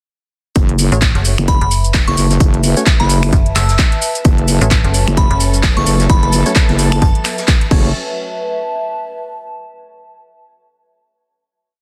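A four-on-the-floor electronic kick drives this gritty, aggressive bass house piece at 130 BPM in F# minor, with swung 16ths. It is joined by a house kit of metallic hats, claps, snaps, cabasa and crash, and a very quiet looped brush breakbeat. A heavy, saturated wobble bass and a chopped FM bass with a metallic edge both pump with the kick, while a dark, hollow organ stab echoes in the background and a glassy bell adds short, crystalline phrases; a detuned, lo-fi tape pad warbles through the drop, lush bowed strings arrive at 4.2 seconds, and the pad rings alone on a final B7sus4 from 7.9 to 9.7 seconds.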